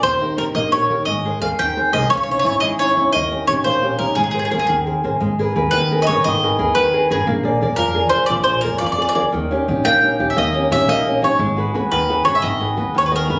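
Captured on a phone in a club-like room with moderate reverb and compression, this short cut from a sunny, romantic Italian folk serenade in a lilting 6/8 sways along at an easy pace. Up front, a bright bowl-back mandolin picks the melody on its doubled strings, bathed in plate reverb, while a bright flamenco guitar fingerpicks the accompaniment and a woody, thumpy upright bass with gut strings plucks a dark low line beneath. At 5.2 s the music moves into a second section with a darker minor cast, and a brief nylon-string guitar fill appears at 13.0 s.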